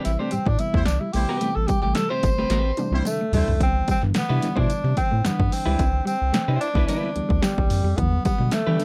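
A sly, driving funk cut at 110 BPM in straight 4/4 opens on a tenor saxophone solo, warm with vibrato and a soft attack, sitting up front yet with a roomy, distant sheen, over a punchy analog drum machine whose dry, overdriven kick and snare hit hard across hi-hat, snare and toms. A slightly broken-up, picked electric guitar comps with spring reverb, while a reedy, worn and slightly out-of-tune electric piano jabs stabs from the background, and a jingly tambourine glitters faintly behind it all. A round, deep analog bass with a nasal edge and fast attack joins at 0.1 seconds, and a dark, clean fingered guitar riff drifts in the background with its own spring reverb. A horn section with light vibrato adds a distant second line from 0.7 to 3.5 seconds, as a drum fill from 2.5 seconds rounds off the saxophone's solo and leads into a new section at 3.6 seconds. The harmony moves from Am9 to Cmaj9 and lands on Em7 near the close, all within a dark, warm production with light reverb, cut from a longer piece.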